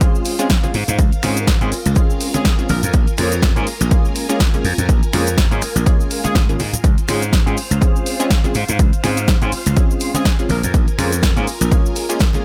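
A punchy, overdriven electronic kick sits up front from the first beat of this sunny, feel-good filtered disco house excerpt at 123 BPM in Db major. Alongside it from the start are a layered house kit of hi-hat, snare, finger snaps and cabasa, dry maracas and congas in the background, a detuned sawtooth polysynth comping funky plucked chords with chorus and phaser, and a swirling, warbling string machine with vintage 12-bit grit. A growly, bright slap bass arrives at 0.7 seconds, and a clear horn section with vibrato and digital delay adds short phrases from 2.3 seconds. Sidechain pumping runs through the synths, bass, horns and percussion over a swung groove that moves between Dbmaj7 and Bbm7.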